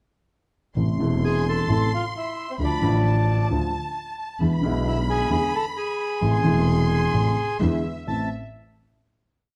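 A syncopated tango rhythm drives this short, complete piece, with the vintage-toned grand piano and a single bowed double bass sharing the pulse at 132 BPM in 4/4, though the time breathes with a rubato feel. The mood is tense and passionate, set in A harmonic minor over a brief progression of Am, Dm, E7, Am and E7 before the piece settles on a final A minor chord at 8.1 seconds. A reedy, dark bandoneon enters at 1.2 seconds with the melody, sitting up front and building its line from short motifs in sentence-like phrases, partly doubled in octaves. Above it, a bowed violin section plays a smooth-topped, vibrato-rich counter-melody that sits further back in the mix and carries a slapback echo. The bass is clear and focused, and the piano stays prominent and rounded, all placed in a large studio room with moderate reverb and a dark, warm production.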